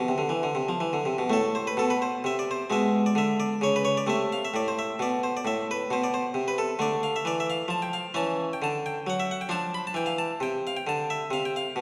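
Grave yet flowing, this short passage from a longer baroque-style suite movement unfolds in A minor at 88 beats per minute in 12/8, played with a free, rubato feel. A solo harpsichord in the Italian style carries everything, its single set of strings giving a bright, plucked, mid-forward tone that sits up front in the sound. The instrument ranges from A2 up to B5, and a short opening phrase gives way at 1.3 seconds to a longer second section that runs to the end. The harmony moves from A minor through a diminished chord back to the home key, then turns toward D minor at 6.8 seconds, colored briefly by a D major ninth before settling again on D minor. A wet concert hall reverb with a long tail surrounds the harpsichord, lending the music a spacious, resonant setting.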